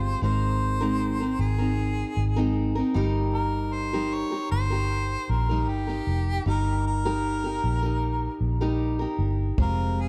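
Dark, lightly reverberant studio production frames this easy-going, carefree acoustic pop fragment at 77 BPM, where a clear harmonica with vibrato, scooped notes and analog delay carries the melody over an up-front, full-bodied picked dreadnought guitar and a round, punchy, foam-muted vintage electric bass moving through Abadd9, Eb and Fmadd9, with a boomy kick played with brushes appearing only at 9.6 seconds.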